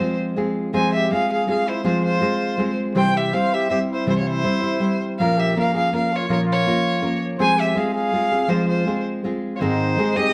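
Mexican folk mariachi in a proud, festive 3/4 at 163 BPM in F harmonic minor, where an up-front, rich bowed violin sings the melody with vibrato over a full-bodied, fingerpicked nylon-string guitar moving from Fm through C, Bbm and back to Fm before landing on Ab, while a mellow trumpet enters at 0.7 s with a smooth, classical-style second line, all heard through close, detailed microphones in a moderate recital-hall reverb in this short cut from a longer piece.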